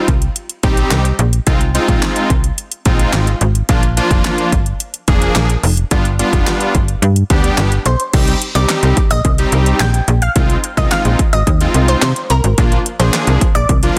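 An overdriven pop drum kit with a punchy kick, fat snare, metallic hats, handclaps and crash drives this confident, energetic dance-pop excerpt at 108 BPM in C minor, where a snappy slap-like FM bass and a bold, detuned sawtooth polysynth pump under sidechain through Cm, Ab6, Bb and G7, until a round analog pluck with chorus, delay and a moving notch carries the melody from 7.9 seconds in a dense, heavily limited mix with light digital reverb.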